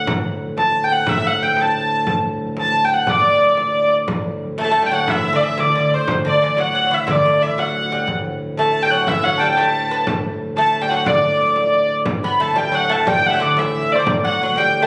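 A rich, nasal hurdy-gurdy carries the melody up front, its wheel-bowed, keyed tone smooth and even from one player, though it sounds somewhat distant. This medieval dance in a straight 6/8 has an ancient, festive mood, and it is cut from a longer piece. Beneath it, a pedal harmonium holds a low drone that is reedy, breathing and mellow, close-miked and dry, while a small, bright frame drum keeps the dance pulse from the opening. At 4.6 s a delicate, fingerpicked lute joins with a second line, its gut double strings bright and partly octave-doubled. The tune repeats before a contrasting passage arrives at 12.1 s. The sound is wet with recital hall reverb and was captured on a phone in the room, so the top end is dulled.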